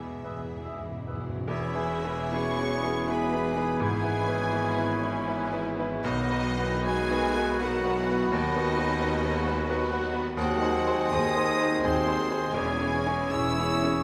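A clear, intimate baby grand piano carries the melody up front, its action noise audible and its notes ringing with long sustain, while a lush, close violin section also carries the melody in this passionate, tragic romantic movement for piano and orchestra, taken from a longer piece in a rubato 3/4 at 67-89 BPM. Around them sit soft, mostly distant layers: a quieter violin section, pure flutes, a roomy oboe and clarinet on second lines, expressive violas, mellow French horns and trombones holding chords, dark punchy trumpet stabs from 1.5 s, and a bass of bright cellos, rich double basses and mellow tuba. Round calf-headed timpani open with a fill and fall silent at 4.9 s, and the harmony moves from E major toward C# minor at 10.4 s, all in a wet recital hall reverb.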